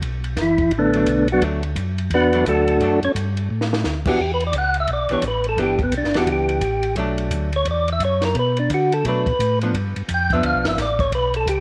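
Soulful and smoky, this soul jazz organ trio excerpt swings at 173 BPM in B minor, moving through Bm7, Em7 and G7 as a percussive tonewheel organ solos from 0.4 seconds with a round, up-front tone and third harmonic percussion through a slow rotary speaker. Beneath it, a mellow tonewheel organ carries the bass line with key click and vibrato, while a clean, hollow-body archtop guitar adds picked accompaniment. A compact cocktail drum kit, dark and rolled-off on top with a high-tuned snare and punchy kick, drives the swing and drops a short fill at 3.5 seconds, all set in light reverb and studio ambience.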